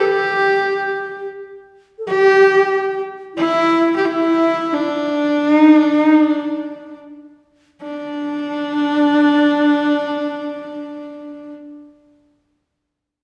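Bathed in the wet reverb of a recital hall, this proud, vast passage of Mongolian folk music in free time, cut from a longer piece, carries an up-front, husky horsehead fiddle bowing the melody with light vibrato and portamento over a pure bamboo xiao that traces a soft-attacked second line in the background, the pace slowing from 2.1 to 7.8 seconds.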